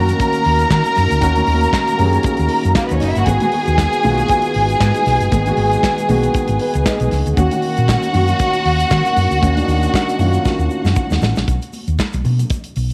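Danceable and joyful, this disco fragment rides a swung groove in 4/4, moving from D#m7 to G#m7 and back. Lush, bowed strings with smooth vibrato carry a second line soaked in tape echo, while a dark, boxy baby grand accompanies and adds a fill at 6.3 seconds, mellow French horns hold sustained chords in the background, and a round, punchy hollow-body bass sits up front. A modern acoustic kit with a punchy kick, snare, hi-hat and handclaps drives the beat alongside very quiet, high-tuned congas and a grainy tube shaker, and during a drum fill the strings, piano and horns drop out by 11.5 seconds, leaving the rhythm section to close in small-room ambience.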